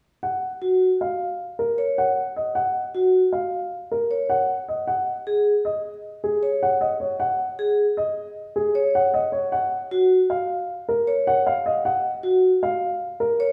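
Set in the wet, resonant reverb of a church or concert hall, this urgent, hypnotic excerpt of minimalist classical pattern music in Eb minor moves at 155 BPM in 6/4, with a dark, mellow, somewhat boxy grand piano carrying the up-front melody from 0.2 seconds while a metallic, ringing, airy vibraphone, struck with medium hard mallets and its motor off, spins arpeggios from 0.6 seconds over chords shifting from Ebm7 to Dbsus4 and back.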